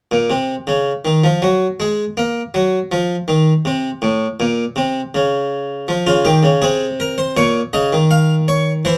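Contemplative and solemn, this short excerpt from a longer baroque-style two-part invention unfolds at an unhurried pace in a straight 4/4, its two voices spread across the harpsichord's range from A2 up to F5. The solo harpsichord, an Italian-style instrument with octave strings, sits up front with a plucked, brilliant tone, the harmony settling onto F minor at 5.9 seconds and B-flat minor at 7.4 seconds. A dark production and a wet studio ambience give the playing a slight bloom of reverberation.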